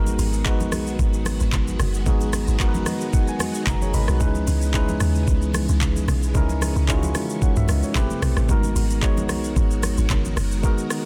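Soulful and deep, this amapiano passage moves at 112 BPM in G# minor with a gentle 16th-note swing, taken from a longer piece. A worn, slightly out-of-tune tine electric piano carries the accompaniment through built-in speakers, adding a fill between 2.6 and 4.2 seconds, while a shimmering, vintage string machine holds sustained violin chords with ensemble chorus and sidechain pumping set far back in the mix. Underneath, a round, dark log drum bass built from FM tones and a noise layer hits with a fast attack and decays, stopping at 10.6 seconds. An up-front electronic R&B kit brings a knocking kick, metallic hats, handclaps, rim clicks, shaker and toms, with soft clipping on the snare, and very quiet acoustic congas with thin, low-tuned skins sit close and dry. The harmony moves from G#m9 to C#m7, then touches Am9 before returning to G#m9, all within a dense, heavily limited modern master bathed in digital ambience.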